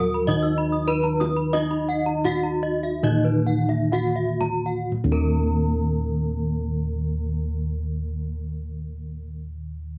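A shimmering, brilliant passage of Balinese gamelan in Eb pelog opens with bronze metallophones carrying the melody and a lower accompaniment, while round, bright bossed gongs sit up front on the bass and a tight, vintage kendang sounds in the background until 5.4 s. Two higher metallophone lines spin arpeggios from the opening moments, struck with horn and wooden mallets, their paired tuning giving ringing, beating tones that range from boxy to full and close. The tempo moves between 56 and 108 BPM, slowing through the first 4.9 s before a second section takes over in a dry, close 1970s-style studio sound.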